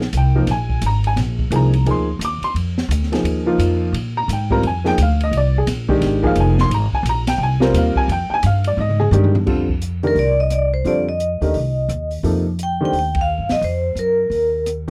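Swinging in 4/4, this hypnotic, searching modal jazz piece opens on woody pizzicato upright bass, an open acoustic drum kit with dark cymbals, a high-tuned snare and boomy kick, and a slightly detuned, vintage upright piano, until a drum fill at 8.8 seconds ushers in a new section where a bright, ringing vibraphone with medium motor vibrato takes up the melody from 10.1 seconds before a band accent at 13.1 seconds, all in a dry, close 1970s-style studio sound.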